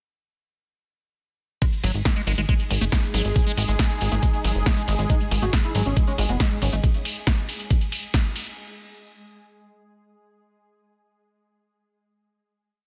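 Psychedelic and alien, this short psychedelic trance piece at 138 BPM drops in at 1.6 seconds with a knocking four-on-the-floor kick, punchy overdriven snare, programmed hats and ride, and a squelchy, resonant acid line in the background drifting against the bar through phaser and tape echo. A galloping sixteenth-note plucky analog bass joins at 1.8 seconds, a swarming granular drone at 2.3 seconds, and a warbling lo-fi pad of slowly shifting chords at 2.7 seconds. From 5.1 seconds a thick, detuned unison lead repeats a dark sixteenth-note riff over a pedal note, all in a dense, heavily limited modern master.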